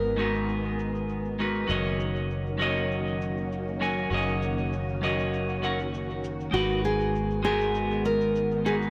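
Smooth and wistful, this short sunset chillout excerpt in G# minor moves at 99 BPM in a straight 4/4, with a clean, twangy electric guitar up front through delay, a fingerpicked nylon-string guitar carrying the melody with delay from 0.0 to 1.4 seconds and again from 6.5 seconds, a silky, slow-attack string machine holding sustained chords through ensemble chorus, a round, dark fretless bass, and a layered electronic shaker in the background, all set in a lush hall reverb over G#m7 and D#m7/F#.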